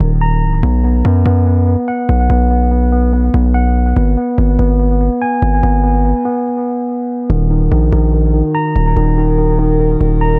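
A half-time hip hop groove carries this tense, dark fragment of a longer piece, built on a heavy, saturated 808-style bass with a fast attack and a gritty noise layer sitting up front. A clean, mellow tine electric piano plays arpeggios through a low-pass filter and dub echo, floating in an echo-heavy mix with light studio reverb. After a stop from 6.5 to 7.3 seconds, a mellow, classical-style French horn section enters in the background with sustained chords.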